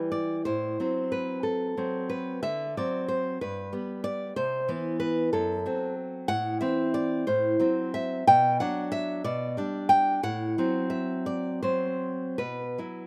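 A lone nylon-string guitar opens this short, wistful romantic piece for solo classical guitar, fingerpicked up front with a bright, fresh-strung tone and an intimate, rubato sway in 6/8. Its harmony drifts through diminished colours, a D7 settling onto G and a Cmaj7, then circles back to F#dim/A before resting on an unresolved Bsus4 at 12.4 seconds. The sound is dry and close, captured outdoors with little reverb, and the passage is cut from a longer work.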